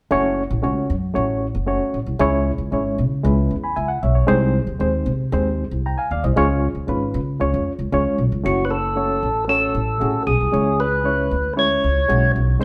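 A stone room gives this live, one-room band recording a moderate reverb tail, with every player sitting up front. The piece is an uptempo, driving 1960s-style soul cut in F# minor at 115 BPM, straight in 4/4, and it carries an urgent push from the first bar. A barky, reedy electric piano supplies the accompaniment throughout, lightly overdriven and shimmering with fast tremolo through its built-in speakers, while a woody, dark pizzicato upright bass on steel strings anchors the low end. The chords move from F#m to C#m, then G#/B# to C#, before returning to F#m and C#m. At 8.5 seconds a warm, fat, clean, percussive tonewheel organ enters with the melody, its third-harmonic percussion and key click turning through a slow rotary speaker. The clip is cut from a longer piece and ends at 12.6 seconds.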